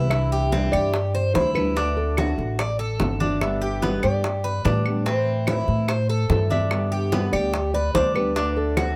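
A dark, thumpy pizzicato upright bass on gut strings sits up front in this relaxed, warm Cuban son and guajira passage, under a thumb-plucked classical nylon-string guitar melody, a full-bodied fingerpicked nylon-string accompaniment with audible finger squeak, bright, metallic double-strung tres arpeggios and woody claves, while tight high-tuned bongos and ringing low-tuned congas played with soft hands sit further back, all captured with close, detailed microphones, light reverb and a faint mains hum.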